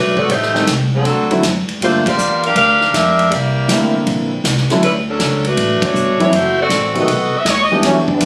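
A clear, up-front saxophone section carries the melody with light vibrato in this energetic, brassy big band swing excerpt at 159 BPM in D major, with band accents landing at 2.0 and 5.8 seconds over chords moving from Am7b5 and D7 through Dmaj7 to B7b13. Underneath, a woody, dark pizzicato upright bass and a punchy, natural drum kit on hi-hat, kick, snare and ride keep the swing moving, while a concert grand piano with audible action noise and long sustain fills in the accompaniment. A warm trombone section enters on a second line at 7.9 seconds, and the whole band sits in a moderate studio reverb, captured on a phone in the room with compression.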